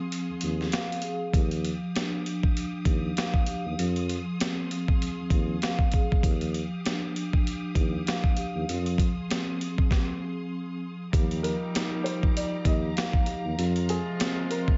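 A mellow vibraphone played with soft mallets opens this reflective, gritty boom-bap hip-hop excerpt, its ringing tone carrying a medium motor vibrato and a cassette-tape colour, while a clear, lush string section holds bowed chords above it. A compressed, sampler-style drum kit follows almost at once, with a thumpy kick, a high-tuned snare and hi-hat re-recorded in a large room and sitting up front, swinging at 98 BPM in 4/4. A breathy tuba carries the bass in a jazz style, up front with scooped notes and vibrato, as the harmony alternates between Fm7 and Ebmaj9 at a tuning of A4 = 445 Hz. After a stop from 9.9 to 11.1 seconds, a horn section enters with soft-attack stabs doubled in octaves and touched with tape echo. Moments later, at 11.4 seconds, a woody, slightly detuned upright piano adds a short-sustained melody. The whole mix is dark, with studio reverb and little top end.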